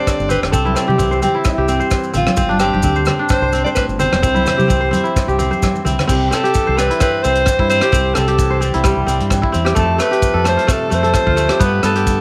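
A breathy, whispered alto saxophone carries the melody in this joyful highlife guitar band piece, its light vibrato and soft attack sitting close and intimate, with an analog delay trailing its pop-style lines. A crisp, ringing kora plays fingerpicked arpeggios up front, while a very quiet, twangy clean electric guitar adds picked accompaniment beneath. A tight funk drum kit with crash cymbal, hi-hat, kick and rim click gives a natural small-room feel with a cassette-tape tint, and a dark, round, punchy fingered electric bass anchors the low end with a deep dub weight. Bright, hard-handed congas with a vintage, band-limited tone join in until a drum fill at 5.5 seconds ushers in a new section at 6.1 seconds, where they stop. Grainy maracas murmur in the background over a lightly swung sixteenth-note groove, and the whole cut, taken from a longer piece, carries the warm, homespun character of a cassette home recording in a moderate studio reverb.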